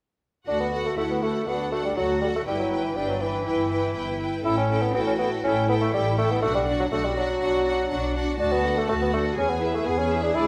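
Cheerful and spirited, this short passage cut from a longer classical-period movement for symphony orchestra moves at a quick, straight four-beat pulse. From 0.5 s to 10.5 s, a clear, focused violin section carries the melody high above a lush second violin line and a rich, smooth viola accompaniment, with those two inner string parts sitting in the background. A warm solo bassoon stands up front in a classical style, its light vibrato and roomy tone filling out the accompaniment. An even, bowed cello section and the double bass section together form the bass, and the basses reach low in the orchestra. The harmony travels from D through Em/G, A7 and Bm, back to D and then on to E, and the ensemble sits in a moderate recital hall reverb.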